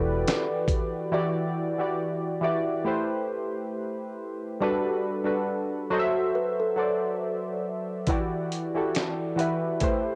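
Melancholic and hazy, this lo-fi hip hop piece sets round, detuned analog keys with a chorus sheen up front under a mellow, woody kalimba melody that rings softly in the background, both softened by a low-pass filter and cassette tape. A gritty, compressed sampler-style drum kit with a thumpy kick, snare and hi-hat appears briefly at 0.3 seconds and returns at 8.1 seconds. Chords such as Em9, Am9, Gmaj7 and F#m7b5 drift beneath a light reverb and a homemade cassette character.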